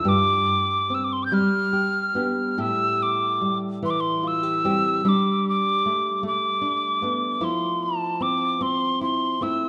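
A mellow, hollow wooden whistle carries the melody up front, its airy tone shaped by gentle vibrato, soft attacks and lifted highs, in this wistful, pastoral Celtic slow air cut from a longer piece. Beneath it, a dark, fingerpicked classical nylon-string guitar, also up front with audible finger squeak, moves through Gsus4, G, Am7, Gadd9 and Fmaj7. Both play throughout in a rubato 6/8 at roughly 48-52 BPM, set in a moderate concert hall reverb.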